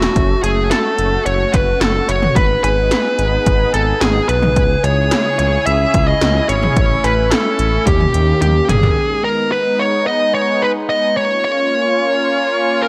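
A dark, distorted fuzz lead guitar carries the melody up front, its picked, compressed tone trailed by delay, in this melancholic, cool synth-pop excerpt cut from a longer piece. Beneath it, an airy, detuned sawtooth pad with chorus holds sustained chords, while a smooth, mellow synth bass and 80s electronic drums fill out the low end and the beat; the drums bring a punchy kick, metallic hats, cowbell, and a snare and toms bathed in gated reverb. After a drum fill at 8.4 s, the bass and drums are gone by 9.0 s, leaving guitar and pad alone over new chords in a light reverb.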